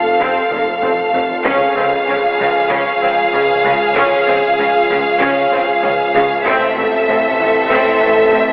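In a straight 4/4 at 96 BPM, this brooding, tense clip from a hybrid orchestral and electronic film score moves from F to Db and then to Am at 6.5 seconds, with a close, dry taiko ensemble adding a brief fill between 0.5 and 1.5 seconds beneath the bowed strings. A rich, up-front violin section carries the vibrato-laden melody over a second violin line, distant lush violas, an intense cello section, a focused double bass section, a mellow French horn section holding sustained chords, and a glassy, ethereal FM pad. Underneath sit a round, dark analog bass riff, a thick, saturated detuned saw bass and a faint tine-like synth pluck playing arpeggios, all bathed in a concert hall reverb and filtered through a telephone-like sound.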